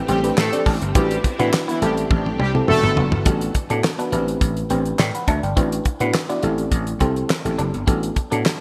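A bright, 1980s-style digital production sets this slick, late-night boogie funk fragment in a moderately lush hall, cut from a longer piece and moving at 104 BPM in a straight 4/4 in A dorian. A dry, damped 70s acoustic drum kit sits up front with a fat snare, tight kick, hi-hat, toms and handclaps. Beside it, a growly, punchy slap bass holds the low end, while a warbling, dark FM electric piano with a noisy edge plays the accompaniment throughout. A twangy, compressed clean guitar picks a riff in the background through analog chorus. In the opening stretch, a bold, wave-folded synth brass line with ring modulation and a filter sweep rides over a silky string machine pad, and both drop away by 3.3 seconds, after a drum fill that starts at 2.1 seconds. The harmony circles Am11, Cmaj9#11/A, D9sus4/A and Gmaj7/A over an A pedal, with an E7sus4 passing through before the second section.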